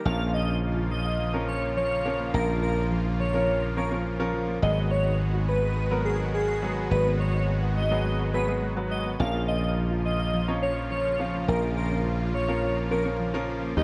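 From the opening at 0.1 seconds, a punchy, foam-muted slap bass drives this bittersweet yet energetic pop excerpt at 105 BPM, beneath an airy, dreamy detuned lead with chorus and vibrato, a clear, open concert grand piano, huge lush supersaw chords and a very quiet crystalline wavetable pluck playing arpeggios, all moving through A#m and G#m7 in light digital reverb with a worn, warbling cassette-tape pitch drift.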